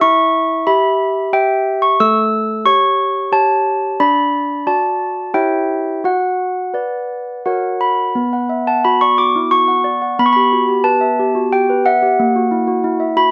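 A solo set of handbells opens this wistful, fragile classical lullaby, their clear, ringing tones struck with soft clappers and sitting up front in a mellow, mid-forward blend. The piece moves in a gentle three-beat metre with a straight feel, the bells spanning from A3 up to E6 and tuned to A at 437 Hz. The first passage drifts through minor-key harmony, from E minor and A7 to D, before settling toward B minor and an F-sharp chord. At 8.2 s a second section begins, returning to B minor and passing through suspended colour before resting on F#7 at 12.2 s. Light reverb and a dark, warm production wrap the bells in a hushed glow, and the 13.3-second passage is cut from a longer piece.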